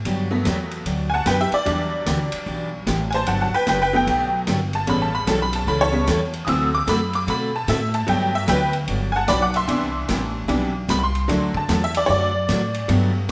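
An upright bass opens this playful, down-home western swing excerpt in G major, its woody pizzicato tone sounding from the first instant before the band joins at 0.1 seconds. A tack piano, the loudest and most up-front part, takes a honky-tonk solo from 0.3 seconds, its metallic, jangly attack and short sustain giving the lead a percussive bite. Underneath, a picked dreadnought acoustic guitar adds bright, full-bodied accompaniment, while a vintage drum kit on hi-hat, kick, snare and ride sits further back with dark cymbals, a punchy kick and a gritty, saturated character with a rolled-off top. The tune moves at 150 BPM in 4/4 with a loose swing on the eighth notes, cycling through Gmaj7, Em7, A7, D7 and Cmaj7 before landing on D. The whole band plays live in one room, wrapped in a moderate stone-room reverb that lends the performance a lively, close-knit feel.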